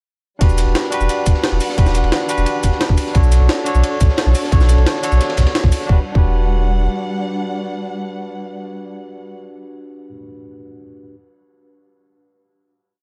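Dark, small-room production frames this melancholic, dreamy liquid drum and bass piece at 175 BPM in E minor, where a tight, up-front electronic kick, an overdriven, pitched-up sampler-style kit of hi-hats, shaker and high-tuned snare, and a saturated looped breakbeat with rolled-off cymbals sitting in the background drive the drop from 0.4 seconds beneath a round sine sub bass in a dotted rhythm, while a bright, barky tine electric piano with dub echo plays rootless held chords with syncopated pushes over bowed strings with vibrato, portamento and sidechain pumping, the piano carrying on alone after the strings stop at 9.4 seconds until 11.2 seconds.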